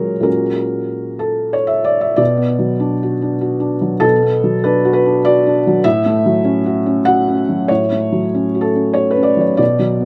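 Intimate and melancholic, this neoclassical minimalist piano fragment in B dorian drifts in a rubato 3/4 at around 92-100 BPM, with a solo felt-muted upright piano, mellow and close up front, spanning A2 to F#5 over F#add9/A#, Bm and F#m/A harmonies in a dry outdoor setting, shifting into a new section at 2.2 seconds.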